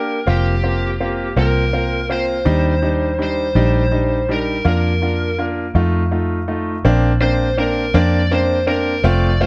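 The recording sits in a light studio reverb, with each of its three parts placed up front. It is a short cut from a romantic, swaying pop ballad in six-eight, and all three instruments play together from the opening moment to its end at 9.5 seconds. A lead guitar through a small cranked amp carries the melody in a picked, overdriven tone with a gentle warmth, staying in a narrow upper-middle range. Beneath it, a clear grand piano supplies the accompaniment with a natural, unadorned quality. A vintage fingered electric bass anchors the low end with a dark, round, punchy sound and foam-muted notes. The harmony moves from Fsus4 through Ebmaj7, Bb/F and F7 before settling on a Bbadd9 at 6.8 seconds as the music turns into a new section.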